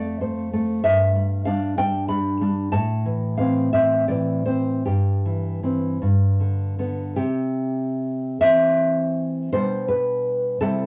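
Swaying in a rubato 6/8 at roughly 46-65 BPM in dotted quarters, this short cut from a longer romantic piece for solo nylon-string guitar moves through F, G and A minor before settling toward C major. The guitar sits up front with a dark, thumb-plucked, deep classical tone spanning F2 to B5, and a new section begins at 7.2 seconds on C before closing on G/B at 9.5 seconds. A moderate studio reverb and the intimate character of a home cassette recording lend the wistful playing a close, personal feel.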